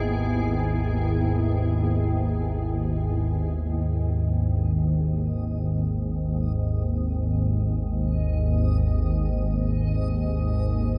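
Drenched in a huge, wet reverb, this dark, desolate ambient drone is cut from a longer piece. A calm, detuned organ-like drone with ensemble chorus sits up front throughout, while a bright, cloudy granular pad holds sustained chords over E until 2.7 seconds, after which a filter sweep moves across the drone as the harmony settles on G#5. From 4.6 seconds a faint, dreamy, reversed swelling texture fades in high above.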